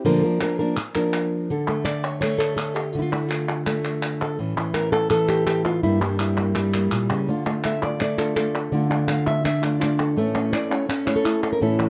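Intense and passionate, this short flamenco excerpt moves at 166 BPM in a straight 4/4, with a bright, fingerpicked flamenco guitar carrying the melody up front from the start, joined at 0.4 seconds by crisp, band-limited palmas hand claps with a vintage character. At 7.3 seconds a second, darker fingerpicked guitar enters with stabs beneath the lead, as the harmony moves from Bb through Dm, A and Gm before returning to Dm and A. The sound is dry and close, like a 1970s studio recording, and the passage is cut from a longer piece.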